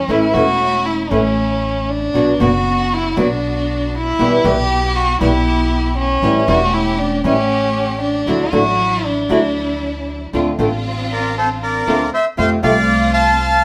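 The recording has a live-in-one-room sound, with wet studio reverb around a tango band playing rubato at 117 BPM in 4/4. The mood is tense and melancholic, starting in D major and turning to D minor at 10.3 s, as the chords move from A through Bm, Em/B and A7 to Dadd9, then darken to Dm7 and F. A bowed solo violin, up front with vibrato and portamento, carries an expressive second line with a smooth top until 10.1 s. Beneath it, a fingerpicked nylon-string guitar plays small, warm accompaniment, a woody, dark pizzicato upright bass holds the low end, and a lush, biting symphonic string section adds focused stabs. At 11.1 s a reedy bandoneon steps forward with the melody, carrying this fragment of a longer piece to its close.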